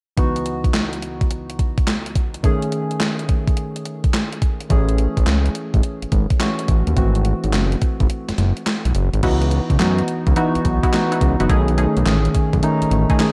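A gated 80s digital drum machine drives this bouncy, slick new jack swing excerpt, its thumpy kick and overdriven, gated-reverb snare sitting up front alongside crash cymbal, handclaps and hi-hat at 106 BPM in 4/4 with a 16th-note swing. Soft electric-piano-like synth keys with a round, mellow triangle-and-sine tone and chorus carry the C# minor harmony from the start, moving through C#m11, Amaj7#11/D#, Amaj7 and G#7b9b13. A fat, detuned sawtooth analog bass, thick and saturated, enters at 4.7 seconds and stays up front. After a break, a punchy, funky polysynth comp with chorus and delay joins at 9.2 seconds in the background, adding filter-plucked stabs as the harmony returns to C#m11 and lands on B13. The whole sits in light reverb and a digital ambience, cut from a longer piece.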